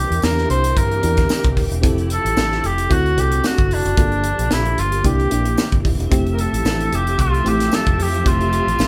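A warm cor anglais carries the melody up front, its soft attack and light vibrato giving a classical, roomy voice to this polished 1980s jazz-funk pop excerpt in F major, moving at 112 BPM in 4/4 with a gentle swing on the sixteenths. Beneath it, an FM electric piano layered with a soft pad supplies lush, dreamy accompaniment, its detuned tone thickened by chorus. A dark studio string section holds sustained, woody chords with vibrato in the background, while a vintage muted fingered electric bass sounds round and punchy. The tight funk drum kit sits up front with a high-tuned snare and tight kick, entering at 0.1 seconds, and a jingly tambourine joins in the background at 0.2 seconds. The harmony moves from C7 through Fmaj9, D7 and Gm7 before returning to C7 and Fmaj9, all captured as a band playing live in a small room for a breezy, glossy mood.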